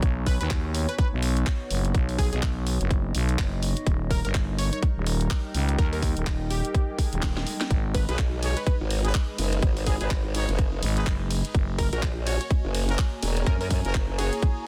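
A swung sixteenth-note groove drives this aggressive, swaggering bass house passage, cut from a longer piece, with a tight, up-front electronic kick layered over a garage drum kit of handclaps, hi-hat, ride cymbal and a cracking snare with warm hats. A growling, thick FM bass with tube saturation and sidechain pumping holds the low end from the start, while a punchy, catchy plucky unison lead with detuned sawtooth layers, a filter sweep and delay carries the melody above a deep, moody analog pad and a nostalgic, lo-fi, warbling tape-like pad sitting in the background with chorus and its own reverb. The harmony moves through Badd9, D#, G#m and F#. A drum fill and a very quiet electronic swell lead into the second half, where at 8.1 seconds a brilliant, close-miked horn section enters with stabs in the background, together with a formant-sweep wobble bass with chorus, overdrive and sidechain pumping. 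The mix is a dense, heavily limited modern master set in digital ambience.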